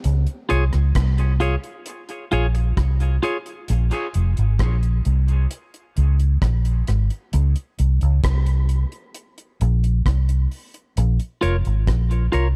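A deep, dry reggae drum kit of tight kick, hi-hat and rim click opens this hazy, spacious dub reggae cut at a slow 66 BPM, joined at once by a round, punchy, foam-muted fingered electric bass sitting up front, while a bright, twangy, clean picked guitar carrying dub echo appears briefly near the start and returns at 11.4 seconds, all over a small, echo-heavy room as the harmony moves from Db to Bb minor.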